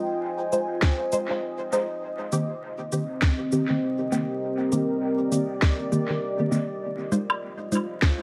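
A swung 100 BPM 4/4 groove of tight, up-front electronic kick entering at 0.8 s and tape-toned electronic shaker, woody snare and woodblock with dub echo arriving at 0.5 s underpins this hazy, meditative ambient dub fragment in C minor, where a deep, dark detuned sawtooth pad with slow attack, chorus and reverb holds sustained chords while bright, muted filtered dub stabs with phaser, ensemble chorus and dub echo move under a filter sweep through Fm7 and Cm7, all set in an echo-heavy mix with vinyl crackle and light reverb.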